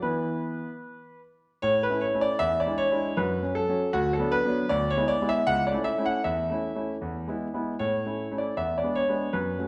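A clear, up-front concert grand piano with a deep bass and open tone plays this playful, graceful classical-period sonatina alone in A major at 78 BPM in 2/4, tuned to A4 = 436 Hz and shaped with rubato, moving through chords such as F#m, Bm/D and A/C# before settling on E7 at 8.6 seconds, all bathed in a wet recital hall reverb within a short passage cut from a longer piece.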